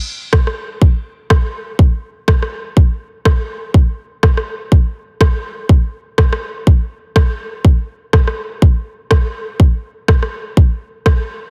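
A punchy, layered electronic kick drum and an up-front rim click open this earthy, hypnotic house fragment at 123 BPM with a swung sixteenth-note feel, running from 0.3 to 11.2 seconds inside a digital ambience given a heavily compressed, radio-like sound.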